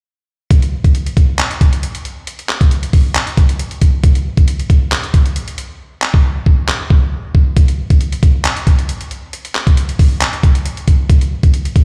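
Heard as if booming from a big sound system in a bare stone room, this eerie, menacing hip hop fragment rides a half-time 136 BPM groove in 4/4 on a gritty, compressed, up-front sampler-style soul drum kit of thumpy kick, handclaps and hi-hat that runs from 0.5 to 11.8 seconds, with the hi-hats dropping out between 5.8 and 7.6 seconds.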